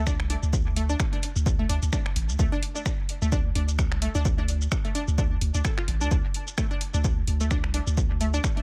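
A dry, echo-heavy mix opens this brief cut of quirky, sparse minimal techno, where a punchy analog kick sits up front on a swung 4/4 groove. A deep sine sub bass with a pitch-drop attack pumps against the kick, while a squelchy, nasal blip pluck, detuned and resonant with a filter sweep, carries the riff through subtle chorus, cassette-tape color, analog delay and its own sidechain pumping. An analog drum machine adds finger snaps, hi-hat and shaker soaked in dub echo, with every part entering at the very start and running close to the cut's end at about 8.6 seconds.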